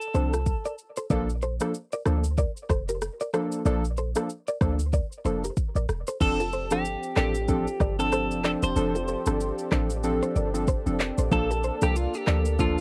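Swung sixteenths at 94 BPM drive this sunny, romantic afrobeats piece, where an electronic afro-pop kit with a deep kick, crash, handclaps, rim clicks and shaker sits up front beside a boomy sine-wave 808-style bass and detuned square-and-saw analog keys with chorus over F6 and Bbmaj7 chords, while a bright, direct-recorded clean guitar riff rings through lush chorus and analog delay, and a compressed, picked twelve-string electric guitar melody with tape color and delay appears briefly at the start and returns at 6.2 seconds alongside a thick, nasal unison pad in the background, all in a lightly reverberant cassette home recording.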